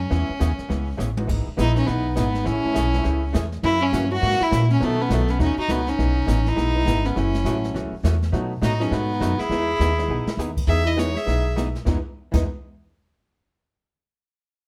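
A clear, intense fiddle carries the melody up front with light vibrato and an airy bow, touched by plate reverb, in this cheerful, down-home western swing excerpt in E major at a brisk 204 BPM with a swung feel. A woody, thumpy pizzicato upright bass drives underneath alongside a brushed jazz kit with dark cymbals and a boomy kick. A dark, clean hollow-body electric guitar and a background upright piano fill out the harmony, while a breathy clarinet with scooped notes adds a second line from 1.6 seconds, and drum fills mark 1.0 and 10.1 seconds.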